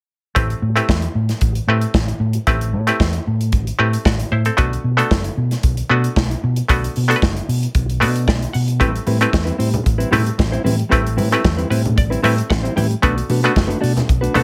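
A twangy, overdriven muted clav comps through this glamorous, danceable disco cut at 114 BPM in A dorian, riding over a round, hollow-body fingered bass and a punchy studio drum kit from the start, adding fills around 7.8 and 11.5 seconds as the chords move between Am9 and Bm7, while a mellow, clean electric guitar and ringing congas join at 8.8 seconds in a small room with light reverb.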